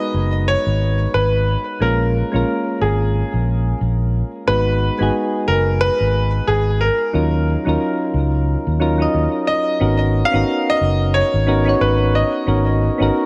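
A clear concert grand piano carries the melody with short sustain and a touch of digital delay, set up front over mellow electric-piano-like synth keys whose gentle chorus and delay blur the chords from G#m7 through A#m7 and D#m7. A dark, round fingered electric bass anchors the groove from 0.1 seconds, sitting slightly louder in the mix, while the swung sixteenth feel keeps this smooth sunset chillout excerpt relaxed. Light reverb and studio ambience surround the parts, and the harmony settles onto G#m11 at 9.8 seconds before the keys ring out last at 13.3 seconds.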